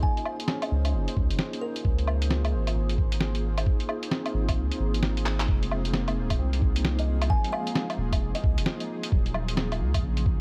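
A hiss of vinyl crackle sits over this melancholic, rainy future garage fragment, cut from a longer piece and moving at 132 BPM in 4/4 with a 62% swing on the sixteenths, in F phrygian. A muffled, thumpy electronic kick and an up-front, compressed, sampler-style kit with a fat snare, handclaps, hi-hat and woodblock carry the groove, both soaked in studio reverb with a tape-softened tone. The kick drops out briefly, and a drum fill at 5.3 seconds leads into the second half. Underneath, a deep, round dub sub bass pumps against the kick, while an airy, breathy pad with a detuned, nasal edge, chorus and 12-bit sampler grit holds sustained chords moving from Gbmaj7 through Dbmaj9, Fm7 and Ebm9. In the background, a barky, overdriven tine electric piano plays accompaniment through a combo amp, shimmering with fast tremolo, sidechain pumping and analog delay. A woody, hollow kalimba with a fingertip pluck carries the melody in two short phrases, at the start and again from 7.0 seconds, its ringing notes trailing off in tape echo.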